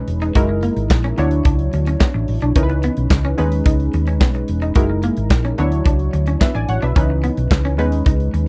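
A straight 4/4 groove from a polished, airy studio drum kit, with a punchy kick, medium-tuned snare, hi-hat and handclaps up front, drives this funky, late-night slice of early-eighties boogie funk. A dark, round hollow-body bass also sits up front, while a detuned sawtooth polysynth with ring modulation, wave-folding and chorus comps through F#13, Dmaj9, C#m9 and B69 twice over. Lower in the mix, a twangy, slightly broken-up guitar plays a riff coated in lush chorus, and the recording has a dry, close 1970s-style studio sound.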